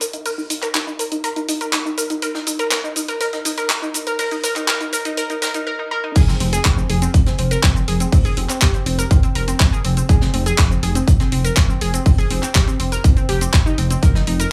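A straight 4/4 pulse at 122 BPM drives this expansive, dreamy progressive house excerpt in F minor, cut from a longer piece. From the start, a house drum kit of cabasa, hi-hat, handclaps and crash cymbal ticks along, joined by a very quiet, distant jazz brush drum kit playing hi-hat and a medium-tuned snare in a roomy studio space. Above them, a round analog pluck spins arpeggios through chorus and dub echo, its sidechain pumping adding a breathing motion while a filter sweep raises the build-up before a short break at 5.7 seconds. The drop lands at 6.2 seconds on an F5 chord, bringing in a punchy, up-front electronic kick and a deep, rumbling detuned saw bass whose beating unison tone also pumps with the sidechain. Light digital ambience and small-room reverb frame the mix.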